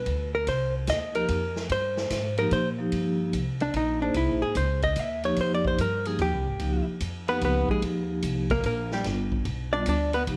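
Jazz in a small-group swing and bop style with a cool, late-night waltz feel, where a dark, clean, up-front hollow-body electric guitar with slapback echo carries the melody and takes a solo from 2.9 seconds, over woody pizzicato upright bass, a distant, roomy drum kit with dark cymbals and a punchy kick, and a ringing vibraphone with soft mallets and motor vibrato that enters at 1.1 seconds, set in light studio reverb in this short excerpt.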